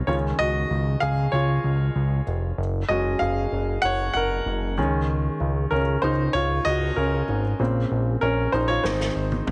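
A steady, straight 4/4 pulse at a relaxed walking pace carries this hopeful piano-driven pop fragment, cut from a longer piece. A bright upright piano leads as the solo voice throughout, its woody, brilliant tone sitting intimate and up front with audible action noise and a short sustain, moving through airy chords from Dbadd9 to Gbsus2 and on to Bbmadd9 before landing on Ab. Beneath it, a fat analog bass built from detuned sawtooth and square waves holds the low end with a thick, mellow weight, its fast attack and long sustain shaped by a moving notch. At 8.8 seconds an acoustic drum kit enters with a brief fill on snare and toms, played with bundle sticks and sounding roomy and distant despite its close placement. A moderate large studio reverb lends space, while heavy compression gives the whole a dense, radio-ready polish.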